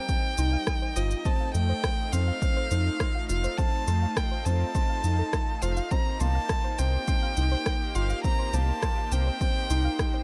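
Intimate and melancholic, this piano and strings electronica excerpt moves in a straight pulse over a gentle shift from Cm7 to F7 and back to Cm7 at 5.9 seconds. A clear, smooth solo violin carries the melody with even vibrato and a slightly boxy bowed tone, trailed by delay. Beneath it, a felt-muted upright piano plays a soft, dark riff thick with felt and audible action noise, also touched by delay. A lush, airy unison pad holds detuned sustained chords in the background, while a soft, round pluck spins chorused arpeggios behind it, both breathing with sidechain pumping. A punchy electronic kick sits up front alongside a layered electronic shaker and rim click, and a deep, round analog bass enters at 0.4 seconds, pulsing with sidechain pumping. The sound stays close and dry, with little reverb.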